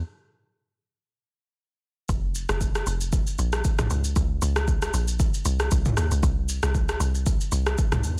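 A dense, heavily limited modern master with little reverb puts this short amapiano excerpt close and upfront, its mood deep and hypnotic in a steady four with a gentle sixteenth-note swing. A woody log drum bass opens alone, its punchy, percussive FM tone carrying a noise layer, with a fast attack and a decaying tail that sits low between F1 and E2. At 2.1 seconds a deep house drum kit joins, built from a deep kick, rim click, shaker and toms. The kit sounds electronic and layered, with a tape-warm character from being re-recorded in a small room, and it sits forward in the mix beside the bass. From there the two parts carry the groove together until the clip ends at 8.2 seconds.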